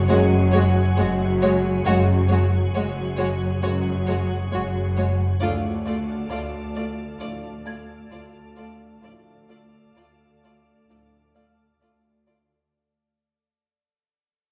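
A soft, organ-like pad and bowed chamber strings open this ominous, uneasy suspense cue from a film score, with a focused violin melody over a woody second violin line, background violas, and a deep cello and double bass foundation, while distant horns and very quiet trombones hold sustained chords, the harmony moves from F#sus2 to Dm at 5.4 seconds, a delicate, slightly out-of-tune music box tinkles in at 7.7 seconds, and the whole fragment fades within a reverberant church-like hall.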